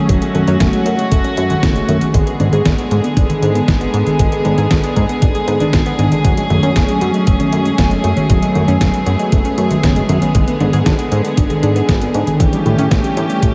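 A straight 4/4 pulse at 117 BPM drives this bittersweet, nostalgic italo disco piece in F# minor, anchored by a thumpy, sampler-style electronic kick drum. A detuned 8-bit digital drum machine, tape-warm and up front, adds cabasa, congas, hi-hat and a medium-tuned snare, both kits re-recorded in a large room. Underneath, a glossy, retro chorused synth bass blends pulse and sawtooth waves with ring modulation and tube saturation, moving from F#1 to A2 through a diffuse ambient delay. Floating sul tasto strings hold soft-attack bowed chords up front, while a round, nasal analog pluck with chorus and phaser spins bright arpeggios in the background. The harmony cycles from F#madd9 to G#dim and back, closing on A7 at 12.4 seconds. The whole dreamy mix is soaked in a cathedral reverb with a 6.2-second tail and dusted with vinyl crackle, in this excerpt cut from a longer piece.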